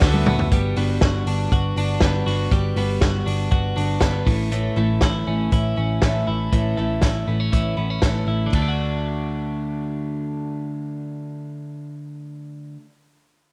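Jangly indie pop at 120 BPM in D major, this nostalgic, bright excerpt from a longer piece opens with a brief fill on buzzy, overdriven combo organ, treated with spring reverb and sitting in the background, alongside a drum fill in the first 0.5 seconds. A clean, compressed twelve-string electric guitar plays arpeggios up front throughout, supported by a picked steel-string acoustic guitar with a concert-instrument glow. Underneath, a foam-muted vintage electric bass gives a dark, round, punchy low end. The vintage drum kit is natural and up front, with a punchy kick, medium-tuned snare, hi-hat, ride, toms and a rolled-off top, and it drops out at 8.6 seconds as the second section begins. The chords move from D6 to Gmaj7, then A, and resolve to D, all set in a small room with light reverb.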